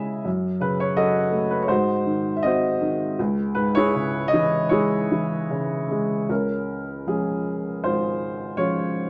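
Rubato in 4/4 at around 75-84 BPM, this peaceful, tender classical fragment in C# minor, cut from a longer piece, features a solo upright piano with a woody, up-front tone and long sustain, moving from F#m through G#7 to C#m before shifting to Db at 6.3 s, all set in moderate studio reverb within a dark, warm production.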